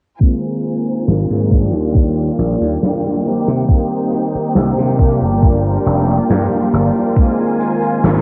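A growly, overdriven slap bass sits up front, entering at 1.1 s with a bright, punchy, amped tone that anchors this dreamy, nostalgic vaporwave fragment at a slow 69 BPM in straight 4/4. Beside it, a mellow synth brass carries the accompaniment with a round, brassy, detuned sawtooth sound, colored by subtle chorus, vibrato, analog delay and a filter sweep. Beneath them, a dark studio string section holds lush, woody sustained chords, bowed over the fingerboard with ensemble vibrato. An electronic kick drum thumps up front until 7.3 s, while a soft-mallet kit with hi-hat and a medium-tuned snare stays in the background with a natural small-room ambience. The harmony moves from Ab69 through Ebmaj9, Cm7 and Gm7 before returning to Ab69. Moderate spring reverb and the low-passed tone of a home cassette recording give the whole piece a hazy, faded quality.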